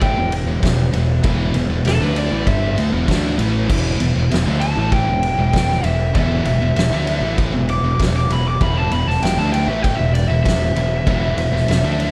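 A compressed fuzz lead guitar with digital delay solos over a brooding, hypnotic stoner and doom metal passage in E minor at 98 BPM, backed by a growly overdriven fingered bass, a pair of very quiet dark fuzz rhythm guitars and a bright, scooped high-gain guitar set in the background, a gritty, very quiet tonewheel organ with key click and slow rotary holding sustained chords, and an oversized low-tuned drum kit with a punchy kick, fat snare and dark cymbals sounding in a stone room, all in a dark production with little reverb.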